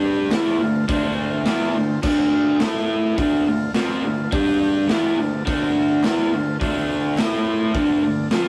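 Overdriven, double-tracked electric guitar sits up front with a picked riff in D minor, moving through Dm, A5 and G5 in this swaggering, gritty garage rock excerpt at 105 BPM. Beneath it a vintage combo organ holds buzzy, clean sustained chords, while an acoustic drum kit with a boomy kick, medium-tuned snare, crash and hi-hat comes in at 0.3 s, saturated, with a pumping room sound and a rolled-off top. Very quiet, crisp group handclaps add a human touch, and the whole take has a rough rehearsal-room feel with modest small-room reverb.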